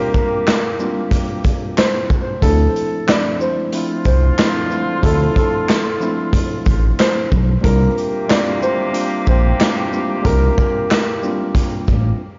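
Reflective and dark, this excerpt of swung boom-bap hip hop at 92 BPM opens with a dark, woody upright piano melody with tape echo, a worn, slightly out-of-tune tine electric piano, tight vintage horn stabs and a raw, punchy garage drum kit with handclaps, shaker and hi-hat, before a smooth, up-front sawtooth synth bass enters at 2.4 seconds over shifting C7sus4 and Dm7 chords, all within a dry, gritty recording dusted with vinyl crackle and a rolled-off top.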